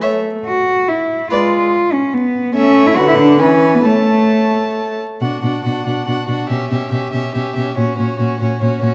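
Dark, crackling vinyl sound and a reverberant recital hall frame this spirited, graceful fragment of a quick classical-period string quartet movement in 3/4 at 131-147 BPM, played with rubato on gut strings in period style, where a light-vibrato first violin carries the melody over a nasal, airy-bowed second violin and a distant, rich viola accompaniment, while a close, up-front cello bass enters at 0.5 s and the music turns from A major to B minor at 5.2 s.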